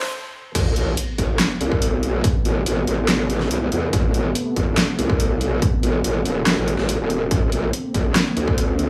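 Chaotic and menacing, this half-time heavy wobble dubstep excerpt opens on a lush, detuned supersaw pad carrying vintage 12-bit grit and sidechain pumping, together with a riser and sub drop and a drum kit of huge snare, bright hats, handclaps and crash cymbal. A brief stop then gives way at 0.6 s to the drop, where an up-front growling, saturated bass with chorus and overdrive joins a distorted, layered electronic kick as the drum kit carries on, all set in a light small-room reverb.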